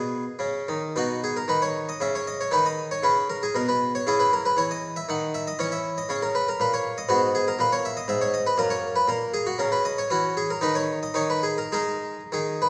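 Classical harpsichord music in a baroque-style suite movement, this short excerpt cut from a longer piece moves in a dance-like triple metre with a gently rubato, serene feel. A solo harpsichord carries everything, its plucked, brilliant Italian-style tone sitting up front with a mid-forward character and the added shimmer of octave strings. The harmony passes through G# minor, B major and C# minor before settling toward G# minor around 7.1 seconds, then touches an F# chord with an added eleventh and a brief unharmonized moment near 10.6 seconds before closing on a bare G# fifth. The instrument spans from low F# up to high F# across its range. A lush recital hall reverb surrounds the playing, heard from further back in the room, with the top end rolled off for a soft, airy halo around the plucked attack.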